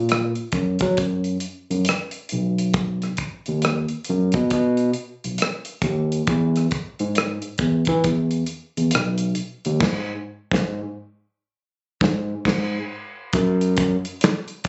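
A slow, swung 4/4 groove at 68 BPM, with a 61% swing on the sixteenths, anchors this soulful, smooth slice of R&B and neo-soul in B major, tuned slightly low to A4 = 438 Hz. An overdriven tine electric piano carries the bass line from B1 up to F#3, its tone barky and gritty through a combo amp and placed up front. A damped 70s drum kit enters at 0.1 seconds, acoustic and dry with dark cymbals, a medium-tuned snare, a tight kick and a rolled-off top, also sitting up front as kick, snare, rim clicks, hi-hat, handclaps and crash cymbal fill out the pulse. The band hits a shared accent from 9.8 to 13.3 seconds before the music shifts into a new section at 13.3 seconds, and the clip is cut from a longer piece. The sound was captured on a phone in the room, with light studio reverb and a top end that stops at 7.9 kHz.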